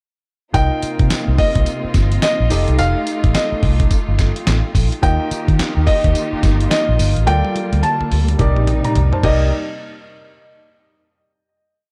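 A hard-swung drum-machine beat at 107 BPM drives this punchy, bouncy new jack swing R&B piece in C dorian. Its gritty sampler-style kit pairs a thumpy kick with a fat snare layered with clap, joined up front by a round, foam-muted electric bass line dotted with ghost notes. A felt-muted upright piano carries a soft, mellow motif of call phrases over held rootless chords and short fills from a clear, polished concert grand, while a veiled con sordino string section lays down a lush sustained pad; the short piece runs as a single chorus, with a drum fill from 7.3 seconds leading to a final hit at 9.5 seconds in a dark production with light reverb.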